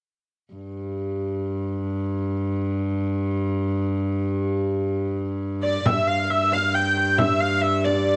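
A clear, earthy hurdy-gurdy carries the melody between D5 and G5 from 5.6 seconds, sitting up front with an airy bow over a reedy viola da gamba drone on G2. The gamba rings with light vibrato and gut-string tone from 0.5 seconds, and both parts carry a cassette tape tint. This festive, rustic medieval dance moves in 6/8 at 90 BPM, counted in dotted quarters, with a small, bright frame drum joining at 5.9 seconds as a second section begins, all set in a wet spring reverb and small room ambience on a home cassette recording cut from a longer piece.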